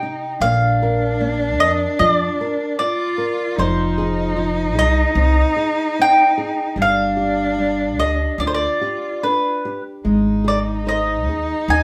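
A picked, woody mandolin sings the melody over a rich, bowed cello line with vibrato and a dark, fingerpicked nylon-string guitar, with a thumpy pizzicato upright bass on gut strings joining at 0.4 seconds, in this nostalgic, tender fado-style ballad excerpt at a rubato 75 BPM, moving through Bb, Fm, G5 and Ab with a live band sound in one room and a wet studio reverb.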